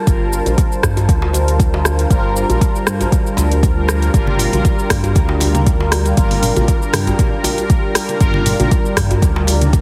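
Hypnotic and spiritual, this afro house excerpt sits on a single Gm7 chord, rolling forward with a gentle swing. A deep, overdriven electronic kick sits up front, while an afro-pop kit adds metallic hats, rim clicks and shaker with a tape-softened edge. A smooth, dark synth bass pumps against the kick, and a detuned sawtooth pad holds soft-attack chords with a long release and chorus. Mellow synth brass stabs, round and brassy, carry chorus, phaser, a filter sweep and dub echo. In the background a medium-tuned djembe enters at 0.5 seconds, joined at 4.3 seconds by distant congas played with hard hands in a large room, all framed by light reverb and a heavily compressed, radio-like sound.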